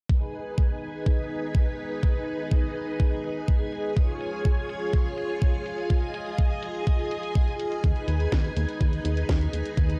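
A thumpy, up-front electronic kick and a layered house kit with a cracking, low-pass-filtered snare and hats open this nostalgic, danceable italo disco excerpt at 124 BPM in G# minor, under lush, vintage string-machine chords with ensemble chorus moving from G#m to C#, while a glossy chorused pulse-wave synth bass joins at 7.8 s, all carried by a dry, gritty cassette-tape sound and a filter sweep on the drums.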